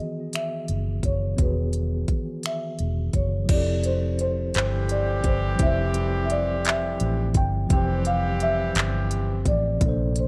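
Slow, sensual six-eight R&B cut from a longer piece, where a soft-mallet marimba carries a round, mellow melody over a clean tine electric piano played through its built-in speakers, moving from Emaj9 to Fmaj9 at 3.5 seconds. A dark, foam-muted, punchy electric bass sits up front beside a produced electronic drum kit of soft kick, smooth hi-hat, finger snaps, handclaps and crash cymbal. A tight, clear pop-style horn section adds octave-doubled stabs from 4.5 to 9.4 seconds, all set in digital ambience with audible lossy compression artefacts.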